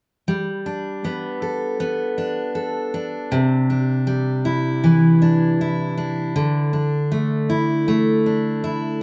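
A straight 4/4 pulse at 79 BPM carries this hopeful, emotional pop excerpt in G major, where a full-bodied, up-front picked steel-string acoustic guitar plays alone from 0.3 to 9.0 seconds, moving through Gadd9, Cadd9 and Dsus2 with light reverb in the sound of a band playing live in one room.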